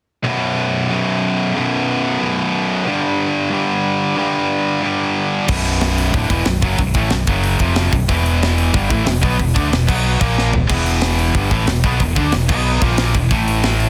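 Two bright, distorted guitars open this aggressive, heavy metal excerpt at 184 BPM in B minor, a high-gain one up front and a tighter one behind it, grinding out a riff built on B5 and G5 power chords. At 5.5 seconds a dark, round, overdriven fingered bass and an up-front, gritty, saturated drum kit with a tight kick and rolled-off top crash in, driving the riff through shifting chords such as F#5, E5 and A#5, with a drum fill at 10.4 seconds. The sound is dry, dense and heavily limited in a modern master.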